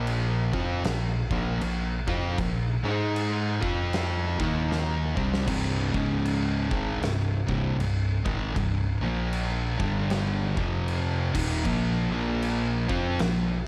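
A small room lends some air to this short stoner and doom metal passage, which moves at a hypnotic, ominous 78 BPM with a swung feel, its power chords trudging from Bb5 down through Ab5, F5 and Eb5 toward a C minor turn. An up-front thick fuzz guitar and a double-tracked, overdriven semi-hollow guitar carry the riff over a punchy, overdriven fingered bass, while an oversized low-tuned drum kit, dark and gritty with a fat snare, punchy kick and crash cymbal, plays throughout. After a drum fill at 4.7 seconds, a second, very quiet fuzz guitar joins the riff at 5.5 seconds.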